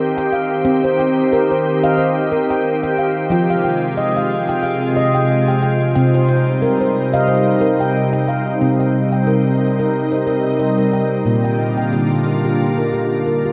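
Gentle and hypnotic, this meditative world piece for tuned percussion moves at 91 BPM in 4/4 with a light swing on the sixteenths, set in C minor and cut from a longer work. A handpan plays arpeggios throughout, its stainless steel tone ringing and bright with sharp finger strokes, sitting up front and trailed by an analog delay. Alongside it, a soft additive organ-like pad holds sustained chords, pure and calm with a detuned sine character, a slow attack and long release, thickened by ensemble chorus and its own built-in reverb. The harmony drifts from Cm to Fm at 3.3 seconds, back to Cm, and settles on Bb at 11.3 seconds as the second section unfolds from 8.6 seconds. A huge ambient reverb with a 7.6-second tail soaks the mix, giving the whole recording a dreamy space.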